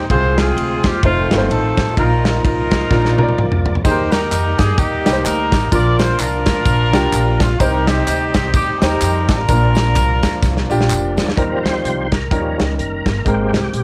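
A mellow horn section carries the melody in this uptempo gospel excerpt, up front and tight with a light vibrato and a vintage, cassette-tinged colour, over a swung 128 BPM groove in Eb major. Beneath it, a woody, thumpy upright bass with gut strings and a clear, intimate grand piano, its action noise audible, carry the harmony, while a very quiet tonewheel organ holds thick, lightly overdriven chords through a slow rotary speaker with key click. An acoustic drum kit recorded in a small room sits up front with a tight kick and medium-tuned snare, playing fills at 2.9 seconds and again near the end of the horn passage. From 3.8 seconds a tube shaker and group handclaps join softly, adding to the soulful, reverent lift as the chords move from Eb through Bb and Cm. After the horns finish at 10.9 seconds, the organ takes a short solo over Eb6, Eb7 and Abmaj9, and the whole home-cassette recording carries a light reverb.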